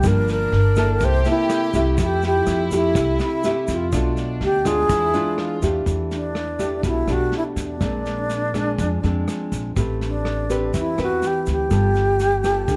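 A breathy alto flute with gentle vibrato carries the melody from the start over fingerpicked nylon-string guitar, woody pizzicato upright bass, muffled lo-fi brush drums with a punchy kick and rim clicks, a faint grainy egg shaker, and a floating, sul tasto violin section that drops out at 5.8 s, just before this smooth, melancholic 123 BPM bossa nova fragment settles into E minor under light reverb and a dark production.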